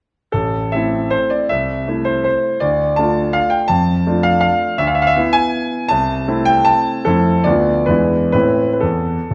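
Capricious and wistful, this short passage from a longer classical piece is a romantic dance in triple time, its dotted rhythms pushed and pulled by a free rubato. A solo concert grand piano carries it from 0.3 to 9.3 seconds, ranging from a deep bass register up into the upper middle of the keyboard. The instrument sounds clear and up front, with an open quality that the generous recital hall reverb carries into the room. The harmony moves unhurriedly at first, from minor chords through Dm and E7/D, then quickens toward the close with Fmaj7, Bm7b5/D and E7 before settling on Am at 8.3 seconds. The result feels like a single graceful turn of a dance, tinged with longing.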